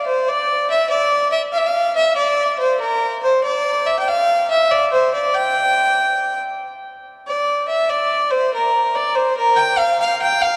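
A single bowed fiddle opens this medieval fragment alone, its earthy, rich tone sitting up front yet sounding distant, carried through a long cathedral reverb in a dark production. The playing has a driving, ancient feel in a straight 6/8 pulse, moving into a new section at 6.6 seconds before the fragment breaks off at 10.6 seconds.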